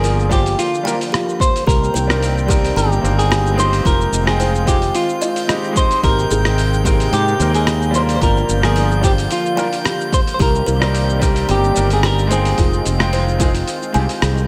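Smooth and warm, this sunset chillout excerpt moves at 110 BPM in 4/4 with a light sixteenth-note swing, cycling through Gm7, Cm7, Fm7 and Abmaj9 chords. A clean semi-hollow electric guitar with a hollow-body tone carries the melody through tape echo and slapback echo. A clear, polished concert grand piano accompanies it with slapback echo until 14.0 s. Up front, a growly fretless electric bass anchors the low end beside an overdriven electronic kick drum that enters at 0.3 s, while a gritty, compressed sampler-style kit adds hi-hat, rim click and shaker. In the background, a thick, detuned unison pad with chorus holds sustained chords, a woody kalimba plucks arpeggios through tape echo, and a glassy texture of drifting overtones floats high above with chorus and its own reverb. Tight, high-tuned bongos appear very quietly in two brief touches, first at 2.5 s, before a longer stretch from 11.2 s, and a scoring stage reverb gives the mix a big arena sound.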